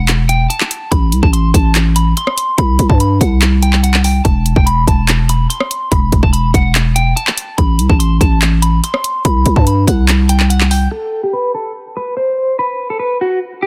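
A dry, dense and heavily limited mix carries this menacing, brooding trap excerpt in E minor at 144 BPM with a half-time feel, where an overdriven electronic kit of hard-clipped kick, bright hi-hats, handclaps and rim clicks sits up front beside a growling, buzzy 808-style bass cycling through Esus4, Am and C5, while a slightly broken-up, compressed electric guitar melody, colored by phaser, low-pass filter and tape echo, carries on alone from 10.9 seconds under a filter sweep until the cut at 13.7 seconds.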